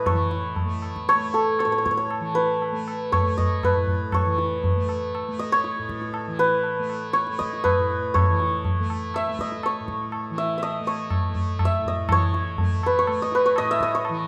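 This Hindustani classical fragment in raga Yaman on A feels radiant and serene, moving in 4/4 at around 120 BPM and quickening steadily throughout. An up-front, hammered santur carries the shimmering melody over a softly plucked, buzzing tanpura drone, while a close, high-tuned tabla keeps time beneath. A new passage arrives at 12.1 seconds, and the whole performance sits in a lush recital-hall reverb.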